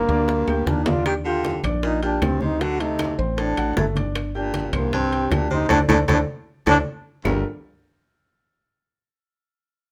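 A lightly reverberant, fiery Afro-Cuban jazz passage in G minor, cut from a longer piece, drives along at 155 BPM in straight 4/4. Up front, a breathy, mellow trombone carries the melody with light vibrato, joined by a bright, punchy baritone saxophone on a second line with scooped notes, while a clear concert grand piano accompanies and a round, woody fretless electric bass anchors the low end. Low-tuned congas, tight high-tuned bongos, ringing metal-shell timbales and saturated claves sit in the background; drum fills open the passage, a band accent and another fill arrive at 5.7 seconds, and the harmony lands on Gm9 at 7.3 seconds.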